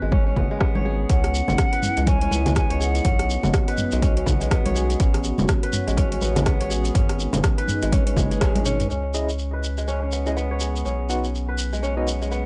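Afro house with a driving, hypnotic swing, cut from a longer piece and caught on a lo-fi home cassette recording with light reverb and a dulled top end. A fingerpicked, ringing kora spins arpeggios from the start, pumping against the sidechain and softened by a low-pass filter and tape echo, while a round analog bass pulses deep underneath. A punchy, layered electronic kick, heard in a small room, drives the groove alongside soft-handed congas and an afro-pop kit of metallic hats, rim clicks, toms and crash, with a grainy, dry shekere shaking along. A pure, hollow concert flute with vibrato sings a brief line at 1.1 s, and a moody, detuned analog pad slowly fills in sustained chords in C# minor. After a band accent at 8.4 s and a drum fill at 8.5 s, the kick, congas and kit fall away, a filter sweep moves across the kora, and at 9.1 s a barky, overdriven tine electric piano enters with gritty stabs, shimmering with fast tremolo.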